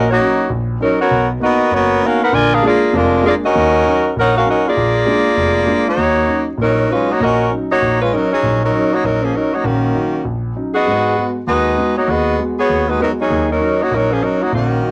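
A brisk swing at 197 BPM in 4/4 drives this short jazz cut in Eb minor, its eighth notes lilting with a moderate swing and a brassy, swinging mood. A bright saxophone section carries the melody up front, its ensemble sound showing a light vibrato and a smooth top as it ranges from Eb3 to Ab5 in idiomatic jazz style. Beneath it, a concert grand piano supplies the accompaniment with an intimate, natural tone, deep bass reaching down to F1, and audible action noise. The harmony circles around Ebm7 through Bmaj7 and Bb7 before a second passage begins at 6.0 seconds, leaning on Ebm7 and Abm7 until the cut ends at 14.9 seconds. Both instruments carry a cassette tape colour, and a moderate studio reverb gives this home recording a modest sense of room.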